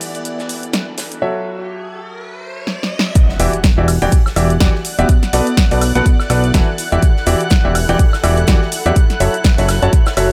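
A clear, up-front grand piano riff with delay and sidechain pumping leads this soulful, bittersweet piano house cut in E dorian at 124 BPM, swung on the sixteenths, over silky detuned analog string pads, a dark, woody symphonic string section in the background, a dry, punchy analog drum machine and a very quiet big-room rock kit. A riser builds from 0.9 s, joined by a drum fill at 2.7 s, and at 3.2 s the drop arrives with an impact and a layered, punchy electronic kick, followed at 3.4 s by a funky, plucky analog bass with ring-modulated bite. Harmony moves through Em9, F#m7 and Bm7, and the mix carries little reverb.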